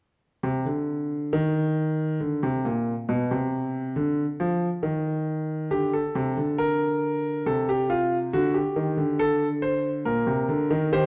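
A clear, up-front concert grand piano plays this short, driving yet contemplative baroque-style three-part fugue alone at 69 BPM in 3/4, its deep bass and long sustain ringing through a moderate recital-hall reverb in a dark production as the harmony moves from Gm through D7(no3) to Bbadd9 before the fragment breaks off at 11.1 seconds.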